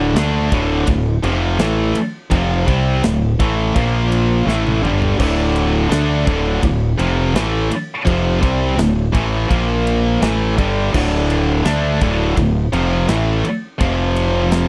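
The excerpt opens on two bright, high-gain electric guitars riffing in D minor at 84 BPM, joined by a growling, overdriven fingered bass that sits up front alongside the first guitar. The acoustic drum kit enters at 0.2 seconds with a punchy kick, medium-tuned snare, ride and crash in an airy small room, and it breaks into a drum fill from 4.5 to 5.2 seconds. The heavy metal piece feels dark and relentless, its riff moving from D minor to B-flat and finally F in a dry, close 1970s-style studio sound.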